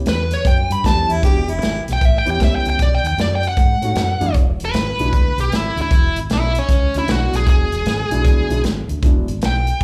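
A bright, overdriven lead guitar sits up front in this rollicking, swaggering electric blues shuffle in E mixolydian at 154 BPM, carrying the melody and stepping into a solo at 4.4 seconds, bathed in plate reverb and slapback echo. A dark, mellow concert grand piano with deep bass comps underneath, a round, direct fingered bass holds the low end, and a natural-sounding drum kit with a punchy kick and medium-tuned snare drives the swung groove through chords moving among A7, E7 and B7. A mellow harmonica with light vibrato and scooped notes slips in briefly at 1.1 seconds, and the whole short cut from a longer piece is heard as a live gig through the venue's PA with club ambience.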